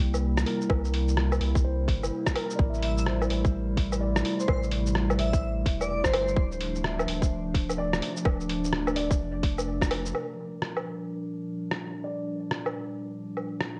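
An overdriven electronic kick drum sits up front in this wistful, melancholic future garage excerpt, tight and produced, entering at 0.7 seconds. Around it, a muffled, pitched-down sampler-style kit of hi-hat, rim click, shaker and woodblock swings on the sixteenths. A detuned, warbling tape-like pad holds slow-attack chords that move from C7 through Am7 and Dm7 to Gm7, pumping with the sidechain, while a deep, round sine sub bass pumps beneath it until 10.1 seconds. A dark, woody upright piano plays accompaniment in the background, low-passed, with tape echo and filter sweeps. An airy, dreamy lead with chorus, phaser and vibrato carries a brief melody from 2.8 seconds. The recording has a cassette-tape grain and sits in a moderate recital hall reverb.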